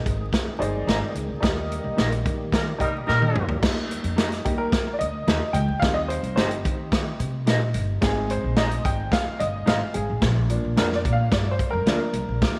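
A straight 4/4 groove at 109 BPM drives this joyful, uptempo 1960s-style soul clip in Eb major, with punchy, up-front drums and a woody, growly pizzicato upright bass under a slightly detuned, vintage upright piano that takes a solo from 3.6 s, while a dark, clean electric guitar adds stabs in the background, a fat tonewheel organ with key click and slow rotary speaker holds sustained chords at the start, and a distant jazz-style horn section plays a brief second line from 2.5 s around a band accent and drum fill, set in echo-chamber reverb with vinyl crackle.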